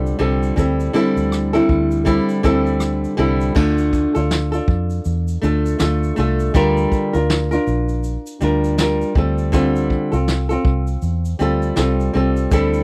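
A gently swung 4/4 groove at 80 BPM carries this wistful, tender acoustic pop excerpt, with a brushed kit entering at 0.1 seconds on punchy kick, medium-tuned snare, rim clicks, shaker and dark cymbals under a rolled-off top. Up front, a warm, fingerpicked flamenco guitar moves from Fadd9 through Dm and Gm7, while a round, foam-muted electric bass with a dark, amped tone holds down the low end. The sound is dry and close, like a 1970s studio, and the second section arrives at 3.6 seconds.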